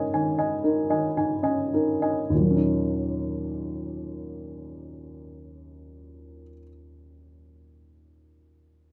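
A dark, mellow baby grand piano opens alone, its first chord, an Absus2, easing as the pace slows over the opening 2.3 seconds. This brief fragment of neoclassical minimalist piano music feels reflective and melancholic, moving in an unhurried, rubato four-beat pulse. At 2.3 seconds the harmony settles onto an Ebm7, beginning a second passage that carries on to 6.8 seconds. The piano spans from its low register up into its upper middle range, and its short sustain keeps each sounding note natural and unblurred. Close, detailed microphones and a nearly dry room place the instrument up front, so the playing comes across as intimate and quietly introspective.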